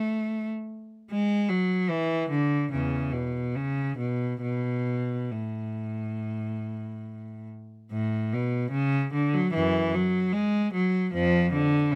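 Classical, baroque-style suite movement for unaccompanied cello, heard as a short excerpt cut from a longer piece, moving at a flexible, rubato pace around 67-76 BPM in 4/4. A single bowed cello plays alone throughout its 12.0 seconds in the low register, its clear, smooth, even tone carrying vibrato as the serene, radiant music moves from A major to F# minor at 7.9 s. The close, detailed recording places the instrument up front in a dry space, bringing out every nuance of the bow.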